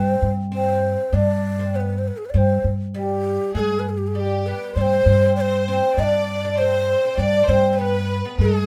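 A straight, steady 4/4 pulse carries this short Arabic cut from a longer piece, with a longing, soulful mood. The end-blown ney leads the melody, sitting up front with a breathy, hollow tone, vibrato and a soft attack. Beneath it, the plectrum-plucked, fretless oud plays a quieter second line, its double strings giving a warm, woody tone. The upright bass is also up front, anchoring the low end with growly pizzicato. At 3.5 s a clear, smooth violin section enters further back with another bowed second line, its light vibrato adding an even ensemble sheen. A moderate small-room reverb gives the whole performance an intimate, close feel.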